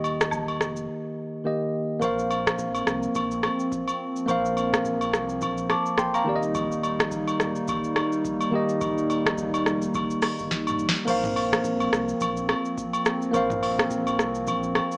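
A loose, swung sixteenth-note groove in 4/4 drives this sunny, breezy afrobeats clip, cut from a longer piece. A booming analog drum machine sits up front with a deep kick, crisp snare, metallic hats, rim clicks, shaker, toms and crash, all given an overdriven edge and a small-room character. Agogo bells and woodblock, joined by maracas and group handclaps, add acoustic live-room percussion, while a mellow sine sub bass with an added octave holds the low end in the background. A clean tine electric piano plays the accompaniment through a combo amp up front, and after a short break from 0.9 seconds, a hollow, flute-like pad with chorus and a slow attack enters at 2.0 seconds with dark, detuned sustained chords. A drum fill at 10.5 seconds leads into the final section, and the whole mix carries a light reverb and a small-speaker tone.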